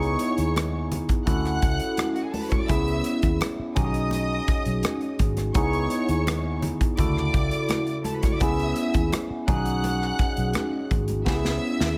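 An up-front drum kit with a punchy kick and medium-tuned snare opens this silky, smooth slice of lush 1970s-style soul at 84 BPM in C# minor, joined from the start by a gritty, overdriven tine electric piano through a combo amp with phaser, a dark, round, foam-muted fingered bass, and a distant, bowed string section singing with vibrato over a C#m7, Dmaj7 and B69 cycle, while ringing hard-hand congas sit in the background from 0.6 seconds and a drum fill arrives at 11.3 seconds.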